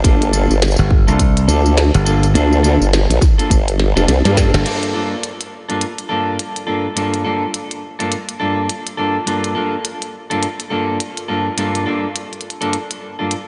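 A dreamy mix soaked in a lush hall reverb, with a rolled-off top end, frames this swaggering, playful glitch hop passage from a longer piece, set at 104 BPM in 4/4 with a 59% swing on the sixteenths, in G minor over a Gm7 chord. It opens on a drop led by a punchy, layered electronic kick and an up-front formant-sweep wobble bass whose detuned sawtooth tone carries chorus. At 0.8 s a bright, direct slap bass joins them. During a drum fill, a band accent lands around 4.5 s, and the kick and both basses fall away as a second section begins at 4.7 s. Throughout, a clean, picked electric guitar plays up-front stabs with sidechain pumping and tape echo. Beneath it, a quieter glitchy electronic kit of tiny snare, clicky hi-hats, crash cymbal and tambourine sits in a studio reverb.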